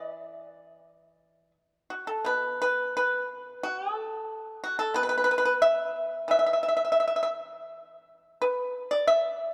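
In a rubato 2/4 around 89 BPM, this short cut from a longer Chinese traditional piece unfolds a serene, pastoral mood in the E shang mode. A solo pipa, played with fingerpicks, carries the whole 9.5 seconds with a percussive, dry attack, sitting up front and ranging from B2 to E5. A moderate concert hall reverb and a dark production frame the instrument, with the opening section giving way to a second one at 2.3 seconds.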